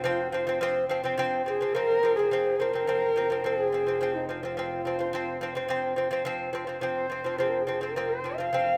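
A rough home-demo sound bathed in lush hall reverb frames this vast, solemn Mongolian folk passage in F yu mode at 106 BPM, where a husky, woody horsehead fiddle bows the melody with vibrato and portamento over bright, delicate fingerpicked arpeggios from an up-front nylon-strung lute, while a veiled, muted double bass holds a soft bowed drone on F1 in the background.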